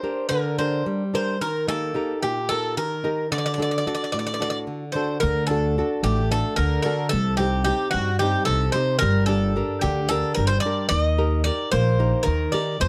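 Lightly reverberant and up close, this moody, bittersweet Greek folk excerpt in 7/8 at 221 BPM features a bright, metallic, picked bouzouki melody on double strings, some octave-doubled, over warm fingerpicked flamenco guitar in D phrygian dominant. Woody pizzicato upright bass on steel strings enters at 5.2 seconds, while the chords move through Gm, Eb, D and Cm before returning to Gm and Eb.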